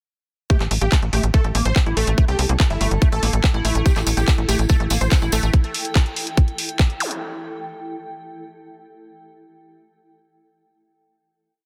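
Psychedelic trance at 143 BPM in a straight 4/4, hypnotic and intense, built on a tight, up-front four-on-the-floor electronic kick, a garage kit of warm programmed hats and claps, and a punchy, nasal sequencer bass rolling in sixteenths with tube saturation, while a squelchy, resonant liquid acid line with accents sits in the background through phaser, delay and sidechain pumping. A full-bodied detuned supersaw stab repeats a mellow riff with the same phaser, pumping and delay, a cloudy granular pad with slowly shifting chords enters at 1.9 seconds, and a jingly hand-played tambourine joins at 3.9 seconds. The dry, dense, heavily limited mix closes with an electronic zap at 7.0 seconds.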